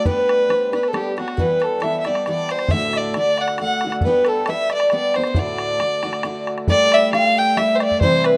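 A lilting Celtic waltz in 3/4 with a gently swung eighth-note feel carries this cheerful folk excerpt, cut from a longer piece. A rich, smooth fiddle sits up front with the melody, played by one bowed player with light vibrato and an even tone. Behind it, a mellow, hollow wooden flute adds a distant second line with vibrato and tongued notes, while a very quiet Irish bouzouki contributes a metallic, double-strung picked line. A full-bodied jumbo steel-string acoustic guitar provides picked accompaniment, and a damped, tight bodhran keeps the percussion close and dry. The harmony moves through G, Em and D before shifting into a new passage on Gsus2 at 6.7 seconds, all set in light small-room reverb with the rough feel of a home demo mix.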